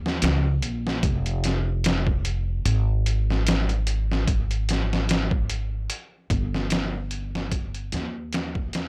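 A dry, gritty recording with hardware saturation frames this brooding, hypnotic trip hop fragment in F minor at 74 BPM, its 16ths carrying a light swing. An up-front upright bass, woody and played pizzicato on steel strings, holds the low end between F1 and Eb2, while a sampler-style drum kit sits beside it, pitched down, muffled and overdriven, with a thumpy kick, a medium-tuned snare and hi-hat. The fragment is cut from a longer piece and fades out from 5.4 to 8.9 seconds.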